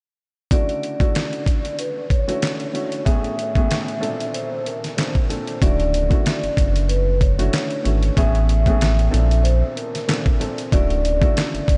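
A small, lightly reverberant room with a rolled-off top end frames this soulful, nostalgic boom-bap hip-hop excerpt with a gently swung feel: a gritty, compressed sampler-style drum kit with a thumpy kick, fat snare, hi-hat and handclaps sits up front beneath a dark, woody upright piano colored by cassette tape and a ringing vibraphone melody played with soft mallets, a slow motor vibrato and analog delay, until a deep sine-and-triangle sub bass doubled at the octave enters at 5.6 s.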